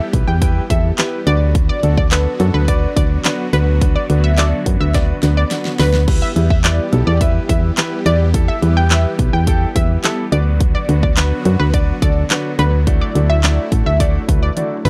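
Energetic and driving, this dance-pop excerpt rides a punchy, up-front electronic pop drum kit with a fat snare, bright hats and fills at 4.9 and 14.6 seconds, together with a round FM bass, an intimate concert grand piano with audible action noise, a lush detuned supersaw pad with phaser in the background, and a warbling vintage analog pluck melody dressed in chorus and slapback echo, the piano, pad, bass and pluck pumping with sidechain over an Em, Bm/D and Dadd9 progression in a dry, close 1970s-style studio sound.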